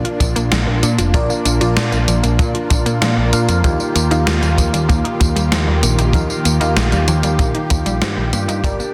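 Up front, a picked electric bass drives this moody synthwave excerpt at 96 BPM in 4/4, its warm direct-and-amped tone present from 0.0 seconds. Around it, a brassy analog pad holds sustained chords, bold and airy with detuned sawtooth layers, a noise layer, a moving notch, chorus and vibrato, pumping against the beat through sidechain compression. A detuned unison pluck spins arpeggios in the background with a punchy, wave-folded bite and digital delay, while an FM electric piano with a soft pad layer adds dreamy, decaying stabs higher up, coloured by chorus and delay. A gated 80s digital drum machine supplies hi-hat, tambourine and a gated reverb snare with a tape-tinged, sampler-style character, joined at 0.2 seconds by a boomy acoustic kick recorded in a small room. The harmony moves from Bb to Ebadd9 inside a lush hall reverb and a dense, heavily limited master, and the music fades out from 7.0 seconds as it is cut from a longer piece.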